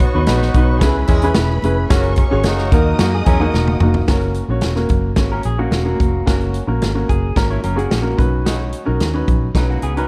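This dark, warm recording sits in a small room and offers a danceable, uplifting stretch of 1960s-style soul cut from a longer piece. A natural studio drum kit leads the mix with a punchy kick and medium-tuned snare, and a drum fill at 3.5 seconds leads into the second section. Round, foam-muted fingered bass and a natural-sounding baby grand piano placed close to the listener carry the groove. From the start, a distant, roomy horn section with light vibrato and octave doubling plays alongside a lush violin section, which plays with vibrato and expressive portamento until 4.1 seconds. From 3.0 seconds an electric guitar through a small old amp adds a slightly broken-up, lo-fi, compressed riff, while very quiet congas, bright and high-tuned under hard hands, lend saturated color as the chords move from C#m7 and F#add9 toward F# and Badd9.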